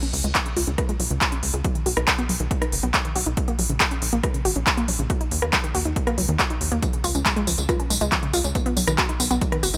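A detuned, wave-folded unison pluck spins arpeggios under a filter sweep with digital delay and sidechain pumping, playing alongside a crisp, overdriven big-room drum kit of handclaps, hi-hat, rim click and tambourine, a dark sawtooth sequencer bass entering at 0.1 s, and a punchy, tape-warm electronic kick from 0.3 s, in a driving, emotional uplifting trance cut at 139 BPM that moves from Db through B, Gb/Bb and Ebm with little reverb.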